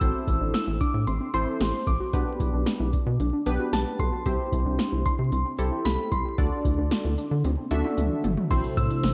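A dreamy, reverb-soaked mix dusted with vinyl crackle frames this bright, wistful synth-pop fragment, where an overdriven analog drum machine with deep kick, punchy snare and metallic hats sits up front beside a rubbery, bouncy square bass. A glassy, crystalline FM bell carries the melody high above a funky, detuned polysynth comp and a lo-fi, warbling pluck that plays arpeggios in the background, each shimmering with chorus, while the bell and pluck also trail analog delay. A drum fill arrives at 7.4 seconds, and at 8.5 seconds an evolving, full-bodied resonant pad enters with sustained chords.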